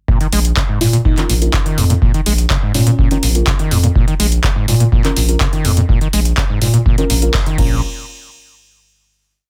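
This is a short, complete acid house piece in Bb minor at 124 BPM, with a hypnotic, raw mood and a straight four-on-the-floor feel. A deep, tape-warm electronic kick drives the groove, joined by a booming analog drum machine with metallic closed and open hi-hats, a handclap backbeat and crash cymbal. A squelchy, gritty sawtooth acid line with accents and slides runs through a resonant filter sweep, its distortion and subtle chorus giving it bite. Beneath it, a thick, saturated sine sub bass plays off the beat with sidechain pumping. From 0.8 to 3.4 seconds, a bell-like FM electric piano adds short, sparkling phrases in the background through chorus, tremolo and tape echo. From 1.2 seconds, dark, soft chord stabs move one shape in parallel on syncopated hits, coloured by chorus, phaser, delay and vintage 12-bit sampler grit. The groove holds on a single Bb minor chord before a final hit at 7.8 seconds, all in a dry, dense and heavily limited modern mix.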